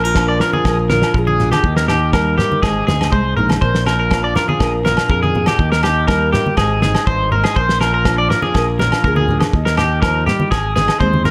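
At a straight 122 BPM in 4/4, this sunny highlife guitar band excerpt in Bb mixolydian cycles through Bb, Eb and Ab as a twangy, slightly broken-up electric guitar plays up-front arpeggios with subtle chorus, tape echo and plate reverb over a fingerpicked steel-string acoustic guitar with audible finger squeak, a direct and amped fingered electric bass, a cloth-damped thuddy drum kit with a fat snare and tight kick, and background agogo bells and low-tuned, soft-handed congas, all in a light reverb.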